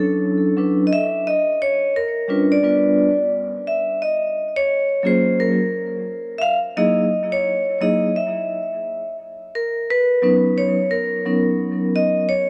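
A swung sixteenth-note feel in 4/4 sets a laid-back hip hop groove for this short cut from a longer piece, smooth and relaxed in mood. Two vibraphones played with medium hard mallets carry it from the start: one takes the melody, ringing and up front with a slow motor vibrato and a boxy small-room character, while the other plays accompaniment with its motor off, metallic and mid-forward. Both vibraphones pass through analog delay, and a moderate plate reverb gives the whole mix an echo-heavy wash. The harmony drifts through lush extended chords, opening on Dmaj9, passing through G7#11 and G7, and settling into Gbmaj9 and Gb13 before landing on Cbmaj9 at 9.5 seconds. The accompaniment stops at 12.2 seconds, letting the melody vibraphone ring out alone until 12.5 seconds.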